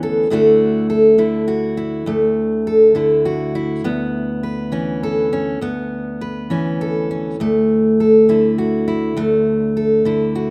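This short folk excerpt moves in 3/4 at 102 BPM, with a straight feel and a nostalgic, warm mood. A single fingerpicked steel-string acoustic guitar with a full-bodied dreadnought tone plays alone from the start to its end at 10.5 seconds, ranging from D2 up to B4. Its sound sits up front, and finger squeaks can be heard in the playing, adding an intimate, handmade touch. The harmony rests in D major, moving from Dadd9 to Aadd9/D at 3.8 seconds and returning to Dadd9. Light reverb surrounds the guitar in a rough home demo mix, giving the passage the feel of a private sketch cut from a longer piece.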